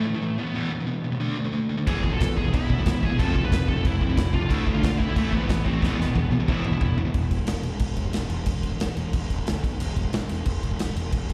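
Heard as a live gig through the venue's PA with recital-hall reverb, this aggressive, heavy metal passage opens on a dark, high-gain lead guitar melody with digital delay over a sludgy, overdriven rhythm guitar riff sitting in the background. At 1.9 seconds an up-front acoustic drum kit with a punchy kick and a pumping room sound arrives alongside a growly fuzz bass, a bright, tight distorted riff guitar with slapback echo, and a very quiet, bluesy second lead line. After a drum fill, the guitars drop out at 7.1 seconds, leaving bass and drums to carry on.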